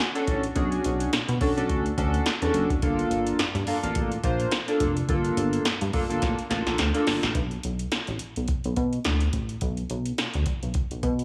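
A glossy, up-front chorused synth bass with a plucky filter and pulse-width sheen anchors this funky, late-night excerpt of early-eighties boogie funk at 106 BPM, swinging over Bm9 and Gm9 chords. A retro chorused polysynth with warm sawtooth pads and slapback echo plays alongside an analog electro drum machine with a deep kick, punchy snare and metallic hats. During a drum fill that begins at 6.2 seconds, the polysynth drops out at 7.2 seconds, and bass and drums carry on to the cut at 11.2 seconds, all set in a moderate, digital recital-hall reverb.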